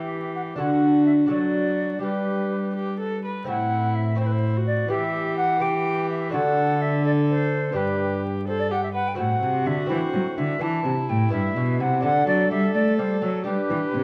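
In a straight 6/8 lilt at 84 dotted-quarter beats per minute, this courtly, solemn Renaissance-style consort dance in A dorian is cut from a longer piece and circles through Em, D, G and Am. A mellow, hollow silver concert flute with vibrato and a crisp attack carries the melody from a distance, while a nasal, reedy viola with gut-string tone plays the second line and a delicate, fingerpicked lute with double strings provides bright accompaniment. An up-front, dark cello anchors the bass with a smooth top, all in a moderate recital-hall reverb captured by close, detailed microphones with vinyl crackle.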